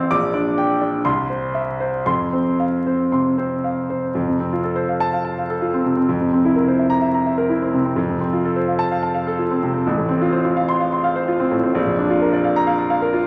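A polished grand piano carries this classical virtuoso study alone, sitting clear and up front from the first moment to its close at 13.3 seconds. The mood is brilliant and heroic, with a flexible rubato pulse in 4/4 that moves between 113 and 133 BPM in F major, and the writing spans a broad compass from A1 up to D6. An opening phrase built on Gm/Bb and C resolves toward F, and at 4.1 seconds the same material returns, passing through C7/F, F/A and arriving on Bb. A lush recital hall reverb surrounds the instrument, while a vinyl crackle sits beneath it. The passage is cut from a longer piece, so it ends mid-thought rather than at a final cadence.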